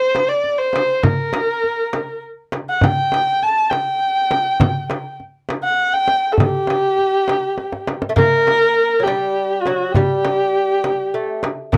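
A woody, bowed kamancheh opens the piece at 0.0 seconds, carrying a hypnotic, melancholic melody in G avaz esfahan with vibrato and portamento, joined almost at once by a deep tombak played with hard hands and a small, bright frame drum, all moving at 67 BPM in a straight 6/8. After a drum fill at 7.6 seconds, a delicate fingerpicked lute with doubled nylon strings enters at 8.1 seconds as a low second line beneath the kamancheh. The sound is a dry, close 1970s-style studio recording tuned to A4 = 436 Hz, and this is a short cut from a longer Persian modal ensemble performance.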